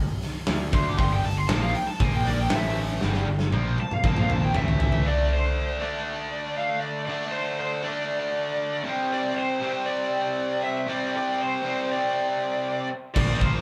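A high-gain lead guitar solo tears through this driving, aggressive hard rock excerpt in D minor at 118 BPM, riding over a bright, double-tracked stack guitar riff with spring reverb, a growly picked bass and a big, dark-toned acoustic drum kit whose fill at 3.0 seconds gives way to the guitars carrying on alone from 5.0 seconds until the rhythm section hits again at 13.2 seconds, all captured live in one small room.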